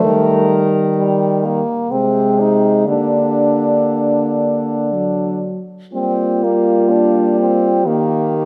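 A classical, elegiac excerpt for horn quartet in a rubato triple metre, where a dark, distant horn carries a yearning melody over a second dark horn line, a clear, up-front horn accompaniment and a soft-attacked bass horn, all four sounding together through the 8.5 seconds in a moderate scoring-stage reverb as the harmony moves from Eb through Ab/C and Gm/D to settle on Gm.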